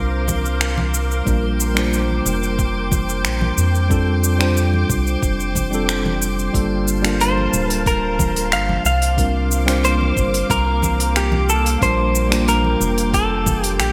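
This warm, relaxed sunset chillout excerpt opens on a worn, slightly out-of-tune tine electric piano with digital delay. Alongside it sit silky string-machine chords thickened by ensemble chorus, a round, deep analog bass, and a faint glassy texture of drifting overtones in the background. At 0.3 seconds a smooth deep house kit of finger snaps, hi-hat and shaker arrives, along with a soft electronic kick and bright, dry congas tucked behind. The harmony moves through C9sus4, Bb6, F69 and Gm9 over an easy, straight pulse in four. At 7.2 seconds a clean, compressed semi-hollow electric guitar steps up front with the melody, coated in lush chorus and digital delay. The whole piece carries a bright 1980s-style digital polish inside a lush hall reverb.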